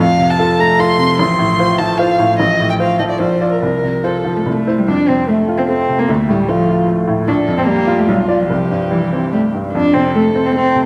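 Restless and stormy, this quick classical-period movement for piano trio in F major races along at 148 BPM in 3/4, with a dark, woody violin carrying the melody in front, bowed sul tasto with vibrato, a pure, floating cello adding a soft-attacked second line, and a brilliant baby grand piano supplying accompaniment, all through a recital hall reverb in a short cut from a longer piece that closes on F at 9.7 seconds.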